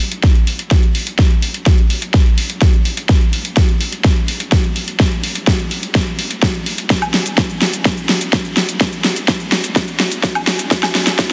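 A straight 4/4 EDM groove drives this anthemic, euphoric build-up, with a big-room dance drum kit of metallic hi-hats, shaker, woodblock and a huge snare playing a drum fill throughout. A punchy electronic kick enters at 0.2 s and sits up front, a little louder than the kit, while a filter sweep runs through the whole passage. The sound is dense and heavily limited, set in a moderate amount of huge ambient reverb, and this short section is cut from a longer piece.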